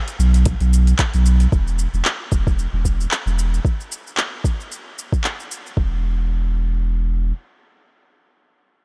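A round, deep sine sub bass sits up front with sidechain pumping through this mystical, hypnotic organic downtempo excerpt in swung 4/4, entering just after a layered deep house kit of handclaps, metallic hi-hats and shaker with its own overdrive, and joined by a soft, overdriven electronic kick from 0.5 s, all within a digital ambience, until the drums stop near 5.9 s and the bass carries on alone to 7.3 s.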